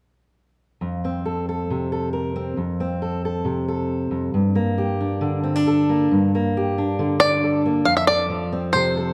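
A straight 4/4 folk pulse at 136 BPM in F major opens this short, anthemic and nostalgic excerpt, cut from a longer piece, as a fingerpicked steel-string acoustic guitar enters at 0.8 seconds with up-front accompaniment, moving from F to G minor and back to F. At 7.2 seconds a bright, twangy bluegrass banjo played with fingerpicks joins on a percussive melody, sitting slightly louder than the guitar. A wet recital hall reverb and a dark, warm production give the guitar an auditorium feel.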